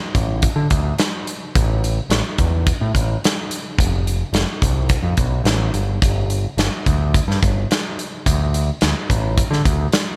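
A growling picked electric bass, overdriven and amped, sits up front from 0.1 s, moving between F1 and D3 in G mixolydian. Beside it, a big acoustic rock kit of hi-hat, kick drum and snare drum, also up front, carries a straight 4/4 at 107 BPM, with a tight kick, a medium-tuned snare, a mid-forward body and a rolled-off top. This cathartic, restless quiet-loud alternative rock passage is cut from a longer piece and carries little reverb.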